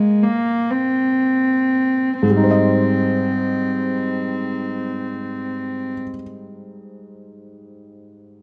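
Closely miked with light reverb, this intimate, tender excerpt of neoclassical piano and strings moves in a rubato 6/8 at 39 BPM in Ab major, slowing over its first 2.2 seconds before settling on an Abmaj7 chord, as a soft, felt-muted upright piano with a mellow, thin-felt tone sits up front as accompaniment while a single bowed cello, played sul tasto with a pure, floating sound and a smooth top, carries a second line until 5.9 seconds.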